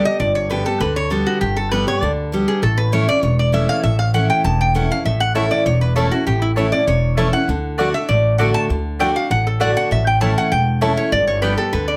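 A metallic, nasal lap resonator guitar, played with slide and fingerpicks, carries the melody up front in this joyful, rustic bluegrass excerpt with a straight feel. Beneath it, a bright dreadnought acoustic guitar picks the accompaniment with audible finger squeak, while a thumpy, dark pizzicato upright bass on gut strings anchors the low end over a G, A and D progression. At 5.3 s a woody, double-strung mandolin adds picked stabs with slapback echo, all set in a moderate studio reverb.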